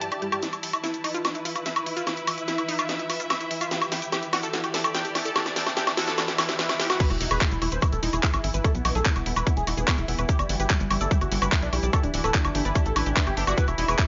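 At 146 BPM in a straight 4/4, this hypnotic psychedelic trance passage is cut from a longer track. It opens with a build-up in which an up-front garage drum kit plays a fill with a cracking snare, bright hats, handclaps, woodblock and crash, while a very quiet, grainy egg shaker ticks close and dry. Filter sweeps move across a lush, detuned unison pluck riff and a pulsing, tempo-synced gated texture of sustained chords with chorus and reverb, while a biting symphonic string section adds an intense, bowed sheen. A faint electronic swell rises from 6.3 seconds, and at 7.0 seconds the drop lands with an impact, a tight, layered electronic kick and a punchy sawtooth sequencer bass. The thick, bold unison lead, heard only for a moment at the very start, returns here with vibrato, a moving notch, phaser and digital delay, as sidechain pumping makes the synths and strings breathe against the beat in a mix with light digital ambience.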